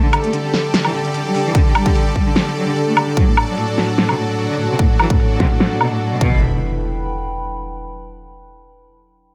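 A nasal, bowed cello melody opens this menacing, chaotic stretch of half-time heavy wobble dubstep at 148 BPM in E minor, its line carried on digital delay over a lush, detuned supersaw pad and a warbling, lo-fi tape-like pad with chorus, both pumping to the sidechain, while a big-room dance kit of huge snare, crisp hats and woodblock plays through low-pass filters and a filter sweep, a punchy, up-front electronic kick joins at 1.5 s, the chords move from Gsus2 to D to Em, and an electronic impact lands at 6.2 s as the tape-like pad lingers to the end, the whole set in light reverb and digital ambience.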